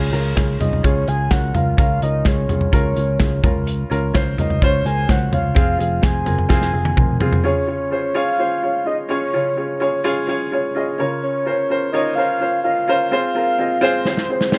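This short, polished excerpt from a longer piece sits in a studio room with light reverb, carrying a hopeful, uplifting mood in piano-driven pop at 127 BPM in Db major. A dark upright piano, mellow and woody with audible action noise and short sustain, sits up front as accompaniment throughout, moving through Db, Bbm/Db and Fm. A soft octave-layered synth lead enters at 0.6 seconds with the melody, its full-bodied, round tone built from triangle and sine layers with a sub octave, fast attack, vibrato and chorus. During the opening section a picked electric bass, amped and punchy, pairs with an airy acoustic drum kit with a tight kick, medium-tuned snare, hi-hat and toms, closing with a drum fill before both drop out at 7.4 seconds. The second section leaves piano and synth lead to carry the same progression until the drums return for a brief fill at 14.1 seconds.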